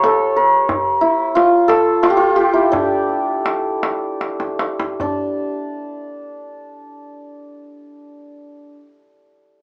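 A hammered santur and a tombak open this Persian modal ensemble fragment together, setting a hypnotic, soulful mood in 3/4 with a straight feel. The santur carries the melody up front, its shimmering, ringing tone moving between D4 and C#5 in D avaz esfahan, tuned to A4 = 436 Hz. The tight, acoustic tombak sits well beneath it, and the tempo, which ranges from 73 to 91 BPM, slows down through the opening stretch. A drum fill arrives at 4.2 seconds, and the tombak drops out at 5.4 seconds, leaving the santur alone in a new section until it stops at 8.7 seconds. A moderate studio reverb and a distant, small-speaker quality frame the whole passage, which is cut from a longer piece.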